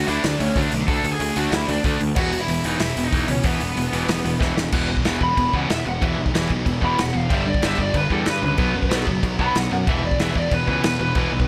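Energetic and upbeat, this punk rock excerpt charges along at 187 BPM, opening in half time before a quick drum fill at 4.4 seconds launches a lead guitar solo from 4.7 seconds, with the harmony moving through D5, E5, G5 and B5 power chords. A lo-fi lead guitar through a small cranked amp carries the melody over three picked, overdriven rhythm guitars: one bright and compressed, one bright and double-tracked, both sitting in the background, and one dark, sludgy and very quiet. A growly fuzz bass and a loose, up-front acoustic drum kit with a tight kick, medium-tuned snare and rolled-off top drive it all in a dry, small-room sound.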